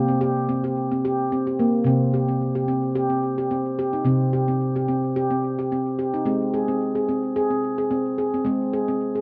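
A gently swung sixteenth-note pulse at 109 BPM in 4/4 carries this hypnotic, meditative world piece, a brief cut from a longer work tuned to A4 = 441 Hz. A solo handpan, placed up front, rings out with a warm nitrided-steel tone and sharp finger strokes, ranging from C3 to Ab4, its vintage, band-limited sound trailed by tape echo in a wet booth ambience. A new passage opens at 1.9 seconds, and the harmony moves from C5 to Ab at 6.2 seconds.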